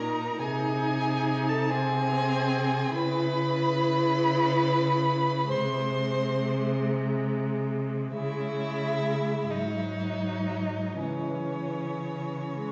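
Heard from further back in a concert hall with a 2.2-second wet reverb, this elegiac, solemn excerpt of a slow romantic string quartet movement in C# minor unfolds in a rubato 6/8 at 39-49 BPM, with a focused, smooth-topped first violin carrying the melody over an even second violin line, a soft-attacked, expressive viola accompaniment with portamento, and a distant, focused cello bass, all four bowed with rich vibrato as the harmony moves between C#m and G#/B#, touching G#5 before settling back on C#m.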